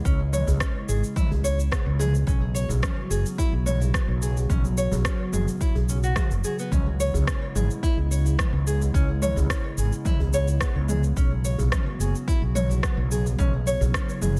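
Organic downtempo in C# minor at 108 BPM, this earthy, warm excerpt from a longer piece moves in a straight 4/4 over a C#m7 and Bsus2 progression, with the whole recording tuned slightly below standard pitch. A warbling, nostalgic tape-like pad opens at 0.0 s with detuned, wave-folded sustained chords that carry a slow attack, long release, chorus, built-in reverb and sidechain pumping, giving its lo-fi tone a gently breathing motion. Almost at once a bright, small nylon-string guitar adds fingerpicked arpeggios with fresh strings through a digital delay, while a dark, round fretless electric bass sits up front in its low register, also pumping with the sidechain. The beat rests on a deep, overdriven electronic kick placed forward in the mix and an overdriven electronic kit of rim click, shaker and toms, both re-recorded in a large room. A tight, cracking djembe with metal rattles, played with soft hands, joins at 0.3 s in the background, and a digital ambience surrounds the whole arrangement.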